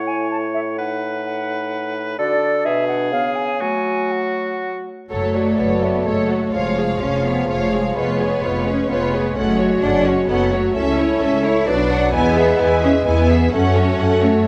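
Quick classical-period orchestral movement in triple time with a graceful, spirited, rubato feel, opening on bright oboe, mellow clarinet, pure silver flute and clear bassoon before the strings and horns arrive at 5.1 seconds, where lush, warm violins carry the melody over a second violin line, focused violas, soft-attacked French horns, distant cellos and an up-front double bass section, all in a wet recital-hall reverb, in an excerpt cut from a longer piece.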